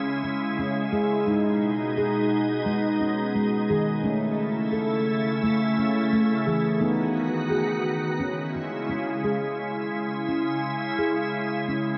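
A soft, organ-like pad and a handpan begin together, opening this gentle, hypnotic world meditation piece in C# minor at a steady 87 BPM in straight 4/4. The pad holds sustained chords with a pure, bright, detuned tone, its slow attack and long release joined by ensemble chorus and its own built-in reverb, and it sits up front in the mix. Alongside it, the handpan plays ringing arpeggios, its nitrided steel struck with soft fingertips for a mellow, dark and smooth sound. The harmony moves from C#m through G#m, A and B before settling back on C#m at 8.2 seconds, and a new section arrives at 9.6 seconds in this short cut from a longer piece. A wet spring reverb and a small room ambience surround the pair, and the home cassette recording lends the calm, lulling mood a homespun character.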